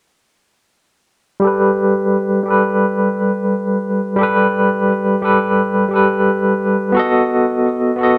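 Light reverb surrounds this short trip hop fragment, cut from a longer piece, and it carries a smoky, hypnotic mood. A tine electric piano, bright and barky, comes through a combo amp and sits up front, entering at 1.4 seconds as accompaniment and playing until 8.2 seconds. Its clean tone is shaped by tremolo, a low-pass filter and tape echo, and a filter sweep runs across its whole passage. The harmony rests on Gadd9 before moving to B7 at 7.0 seconds, with the piano ranging from G3 to D#5. The groove sits at 87 BPM in 4/4, with a 56% swing on the sixteenths.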